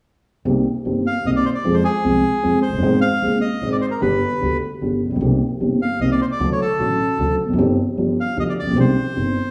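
A reedy, up-front bandoneon carries the melody from 1.1 seconds in this dramatic, sultry tango cut from a longer piece in C minor, moving at 151 BPM in a rubato 3/4 over a dark, mellow upright piano and a growly pizzicato upright bass with woody steel strings, the trio sitting in a wet recital-hall reverb as the chords travel from Cm7 through Fm, Ab and G to a closing Cmadd9.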